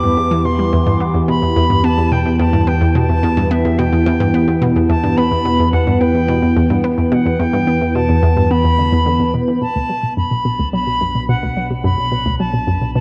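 Hypnotic and expansive, this ambient, sequencer-driven space music moves at 108 BPM in a straight 4/4, drifting from Em to Bm7 at 9.6 s in a short cut from a longer piece. A sweeping, resonant pad sustains lush chorused chords beneath a round, detuned analog pluck riff with chorus and tape echo, while a fat, saturated analog bass holds the low end. Above, a reedy, airy silver concert flute carries the melody with vibrato and tape echo, as a filter sweep colors the synth arpeggio from 9.6 s, all set in a wet plate reverb and a worn, warbling cassette sound.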